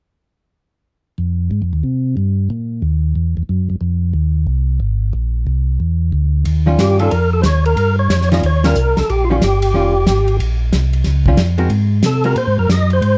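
This swinging, bluesy soul jazz organ trio piece, cut from a longer performance, opens at 1.2 seconds with a mellow tonewheel organ playing the bass line alone: round, dark and clean, with audible key click and a slow rotary speaker. The tempo is a brisk 182 BPM in 4/4 with a swung eighth-note feel, centred on E-flat mixolydian, and the opening passage moves through suspended and minor-seventh colours. At 6.5 seconds the harmony settles onto Eb9, and a soul drum kit enters with hi-hat, kick, ride and snare. The kit is acoustic and dry in a pumping room, with dark cymbals, a fat snare, a tight kick and a rolled-off top. Moments later a hollow-body archtop guitar adds clean, picked, compressed accompaniment, while a second tonewheel organ takes the melody with a fat, percussive tone, light overdrive, third-harmonic percussion and chorus vibrato through its own slow rotary speaker. The band hits an accent together at 8.6 seconds before the chords shift to Ab9, all within a dark, warm production with light reverb.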